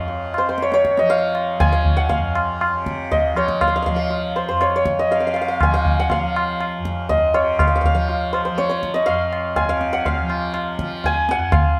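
Hindustani classical music in a solemn, introspective mood, this short passage is cut from a longer piece and gradually speeds up across its 11.8 seconds. The hammered santur carries the melody in a compact upper range, its ringing, shimmering tone placed up front and doubled by a slapback echo. Beneath it, a softly plucked tanpura sustains a buzzing low drone that sits well back in the balance. The low-tuned tabla, entering at 0.1 seconds, sounds close and dry with a short ring, standing forward alongside the santur. The whole performance is heard from further back in a studio with a short but wet reverb.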